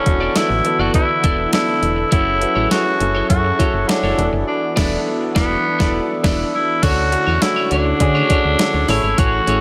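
A raspy, up-front tenor saxophone carries the melody through this romantic, glossy 1980s-style pop excerpt at 102 BPM, backed by an intimate concert grand piano, a punchy round FM bass, a smooth detuned analog pad with chorus, a slightly broken-up electric guitar riff with chorus and delay, and a thumpy, overdriven digital drum machine with gated reverb, as the band hits an accent from 4.5 to 6.8 seconds before the harmony shifts from E7sus4 and F#m7 to Dmaj7 and Amaj7.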